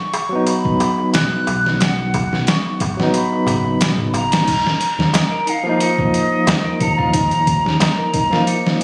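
Trip hop with a dark, cinematic mood, where an airy concert flute carries the melody through vintage 12-bit sampler grit and tape echo over a gritty, pitched-down sampler-style drum kit with a thumpy kick, a crisp metal-shell darbuka in the background, a barky tine electric piano with tremolo up front, and a round analog bass entering at 1.1 seconds, while a clean semi-hollow electric guitar adds picked arpeggios from 4.5 seconds, the mix sounding as if captured on a phone in the room, with spring reverb and a faint mains hum.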